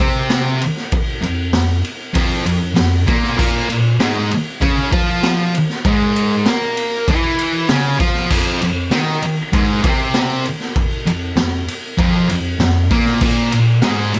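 Garage rock with a swaggering, raw mood at 98 BPM in straight 4/4, cut from a longer piece, where a thick, bright, double-tracked fuzz guitar riff over F5 and Bb5 power chords sits up front beside a gritty, saturated acoustic drum kit with a high-tuned snare, boomy kick, crash and ride cymbals and a rolled-off top, both playing throughout the 14.2 seconds in a small room, the riff repeating from 8.3 seconds.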